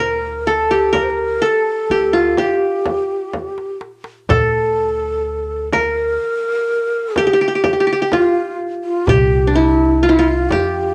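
The plectrum-plucked qanun leads this hypnotic, longing excerpt of Turkish makam ensemble music, its bright-edged triple strings carrying the melody up front through cassette-tape grit and plate reverb. A breathy ney plays a second line just as close, its end-blown reed cane tone tongued and unsteady with vibrato, and it carries the same tape and plate treatment. Underneath, a pizzicato upright bass on gut strings gives a woody, thumpy foundation, while a dry clay-shell darbuka sits in the background and a frame drum played with soft hands joins at 0.9 seconds. The piece moves at 126 BPM in a straight 10/8, with a drum fill from 3.3 seconds leading into a new section at 4.3 seconds. The home cassette recording has a moderate studio room.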